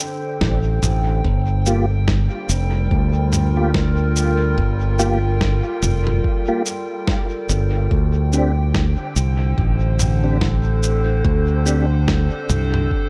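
Spacious and meditative, this ambient dub passage, cut from a longer piece, drifts at 72 BPM in G minor with a swung sixteenth feel, moving between D7sus4 and Gm7 over a warbling, detuned tape-like pad treated with chorus, phaser and built-in reverb. A bright, punchy fingered electric bass sits up front over a muffled, thumpy electronic kick and a lo-fi sampler-style kit of shaker, snare and toms bathed in dub echo, both pitched down and tape-warm in a small-room sound. From 1.7 s a clean tonewheel organ adds stabs through a slow rotary speaker with chorus vibrato and dub echo, all set in light reverb.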